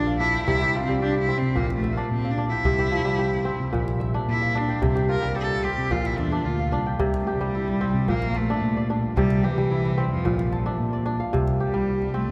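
West African traditional string and xylophone music at 111 BPM in C mixolydian, this flowing, hypnotic fragment of a longer piece sets a smooth, bowed cello with vibrato, soloing up front through the first 7.0 seconds, over ringing, crisp fingerpicked kora arpeggios, a punchy, amped fingered electric bass and a tight, cracking djembe tucked in the background, as the harmony sways between C and Bb under a long cathedral reverb.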